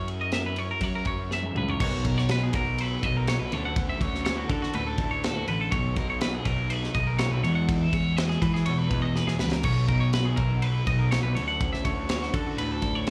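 Math rock and midwest emo at 122 BPM in a straight 4/4, this bright, wistful passage is cut from a longer piece and heard as a live gig through the venue's PA, with club ambience and little reverb. A twangy electric guitar picks clean, compressed arpeggios high up, its notes doubled by a slapback echo. Behind it, a bright twelve-string electric guitar picks its accompaniment through a phaser, sitting in the background. Up front, a fuzz-drenched picked bass growls with overdrive, while a punchy acoustic kit with a medium-tuned snare and rolled-off top drives the groove, joining at 0.1 seconds and marking drum fills around 1.3 and 9.1 seconds. The harmony opens on F#7, then circles through lush major-ninth chords on B, D and E, giving the bright guitars their yearning color.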